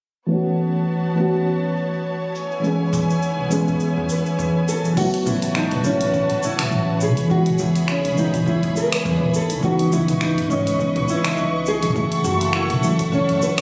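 Captured on a phone in the room, this compressed recording carries a moderate concert-hall reverb that softens its edges. It is a relaxed, smooth sunset chillout cut, taken from a longer piece, with a gently swung feel. Up front, a mellow FM electric piano plays round, warbling accompaniment with chorus and tremolo, and a filter sweep shapes it through the opening section, while a rich studio string section holds bowed chords with vibrato behind it. A layered deep house drum kit of hi-hat, shaker, finger snaps, toms and crash cymbal sits under muffled filtering and a small room ambience. A woody pizzicato upright bass enters at 2.9 seconds, a dark, fingerpicked nylon-string guitar takes the melody with delay from 4.1 seconds, and a punchy electronic kick joins in the background at 5.0 seconds. The harmony moves through A6/9 and E6 before settling into C#m9 and F#m7.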